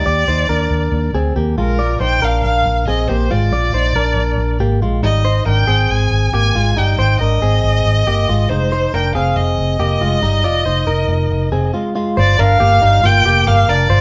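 Indie pop at 139 BPM in a straight 4/4, this short cut from a longer piece feels youthful and breezy. A single bowed violin carries the melody with a dark, woody tone and vibrato, sitting up front yet sounding distant. A clean electric guitar, recorded direct and compressed, picks bright, twangy arpeggios, while a foam-muted fingered electric bass gives a round, amped low end. The three parts play together throughout the 14 seconds, as a band captured live in one large studio with moderate reverb. The harmony moves from Ebmaj7 through Bb7, Abmaj7 and Fm7, and a brief break at 11.7 seconds leads into a new section at 12.2 seconds on Gm7.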